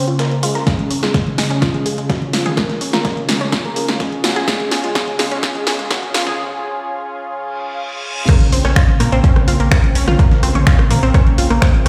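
Melodic techno cut from a longer piece, dramatic and driving, built as a long build-up that breaks at 6.4 seconds before a drop at 8.3 seconds. Filter sweeps run across the pluck arpeggios, the pad and the fat, nasal sawtooth lead, whose mellow, vibrato-touched melody carries subtle chorus and delay before it falls away just ahead of the break. A lush, thick detuned pad holds sustained chords with chorus, while the lush, punchy unison pluck spins detuned arpeggios through a digital delay, and a round, deep analog bass anchors the low end. Up front sits an overdriven, punchy electronic kick, joined by an overdriven analog drum machine playing a fill with snare, toms, rim clicks, finger snaps, hi-hats and crash, plus a very quiet, gritty sampler-style kit adding hi-hat and snare. Sidechain pumping breathes through the synths, the bass and the drum machine's hats, toms and cymbals, an electronic reverse cymbal rises into the drop at 7.6 seconds, and the harmony moves from Bbm to Db and opens onto Bbmadd9. 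The mix sounds as if played over a big sound system in a bare room, wrapped in a lush hall reverb.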